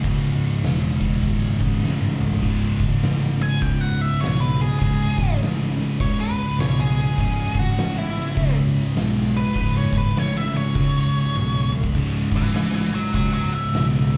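Stoner and doom metal with a heavy, brooding swing at 101 BPM, heard live through a club PA, where a very quiet fuzz guitar, a background fuzz guitar and a bright, double-tracked high-gain guitar with slapback echo grind out the riff over a growly, overdriven picked bass and an oversized, low-tuned kit with a fat snare and punchy kick, before a drum fill at 1.8 seconds opens the way for a dark octave-fuzz lead guitar that enters at 3.4 seconds with slapback echo and digital delay and solos until 13.8 seconds.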